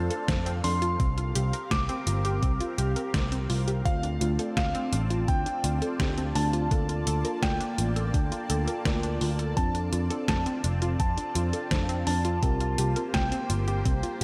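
Synthwave in 4/4 with a nostalgic, moody feel, this excerpt sets a vintage electric grand piano melody with slapback echo and delay over a lush, thick, detuned unison pad that pumps with the sidechain and a round analog pluck spinning chorused arpeggios. A dark, foam-muted picked bass sits up front alongside a thumpy electronic kick, while an 8-bit drum machine adds hi-hat and a medium-tuned snare. From 3.9 seconds a soft, full-bodied FM electric piano adds background stabs, all through a big arena-like hall reverb over chords moving from F6 through Dm7 and Bbmaj7 to C7sus4.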